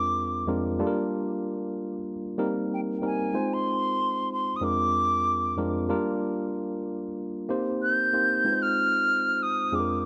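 A straight 4/4 pulse at 94 BPM sets an unhurried soul groove in this bittersweet, smooth fragment cut from a longer piece. A worn, slightly out-of-tune tine electric piano carries the accompaniment from F2 to C5, its lightly overdriven tone coming through built-in speakers and sitting up front. The chords circle through Bb9/F, Gm7, Cm7 and Fm7, with the cycle repeating from 4.6 seconds. Above, a hollow concert flute sings the melody between G5 and G6 with a pure tone, vibrato and tongued notes, its line trailed by analog delay. Both parts play throughout the 10.1 seconds, framed by a dark, warm production and a light studio reverb.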